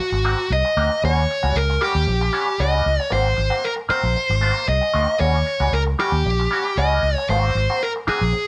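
Funk excerpt with a funky, energetic drive, built on a straight 4/4 groove that moves between Ab9 and Eb7#9 chords. A dark, distorted high-gain lead guitar carries the melody up front, while a clean, compressed semi-hollow electric guitar filtered through wah supplies the accompaniment. A round, punchy foam-muted fingered electric bass enters at 0.1 seconds and sits up front, the whole short clip framed by light reverb.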